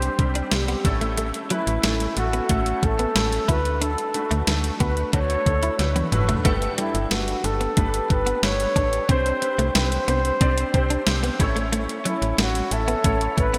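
Uplifting and romantic, this excerpt of 1980s-style pop moves at 91 BPM in D major, led by a breathy, intimate flugelhorn melody over a polished grand piano treated with ensemble chorus and a snappy, metallic FM slap bass. A clean, picked electric guitar riff sits in the background with chorus and delay, while an up-front 12-bit drum machine with a thumpy kick, gated reverb and toms drives the groove, breaking into a drum fill at 5.8 seconds. The bright digital production is bathed in a lush hall reverb, and the harmony moves through Csus2, A, D and Gadd9.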